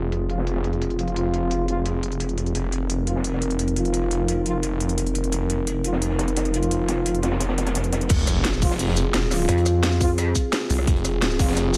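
A lightly reverberant studio sound frames this cut from a longer dark technical drum and bass track, its mood brooding and mechanical in a straight four-four. From the start, a snarling, detuned saw bass growls up front with distortion and sidechain pumping, while a deep, moody analog pad holds sustained chords beneath it with chorus and a slow attack. Two drum kits run together: a produced electronic kit with a cracking snare, crisp hats, rim clicks, shaker and crash, and a gritty, saturated breakbeat kit sitting in the background with a rolled-off top. A mellow, classical-style brass ensemble adds stabs carried by tape echo. At 8.1 seconds the drop arrives with an impact, as a tight electronic kick joins and a sub drop sounds in the background. At 9.5 seconds a pulsing, heavy pluck wobble bass with chorus briefly comes to the front.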